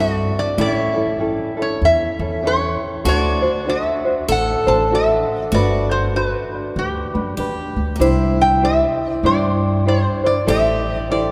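Hawaiian music with a dreamy, sunny mood, swinging gently in 4/4 at 97 BPM and moving from G major to C major at 8.0 s, cut from a longer piece. An up-front lap resonator guitar carries the melody with a metallic, nasal slide tone played with fingerpicks, while a picked steel-string acoustic guitar adds a second line, a thumb-plucked tenor ukulele gives light accompaniment, and a woody, growly upright bass thumps up front beneath them. The ensemble sits in a lush cathedral reverb, recorded in a church or concert hall, with the chords gliding from C6 and A7 through D7 to Gmaj7, then Cadd9 and Am7.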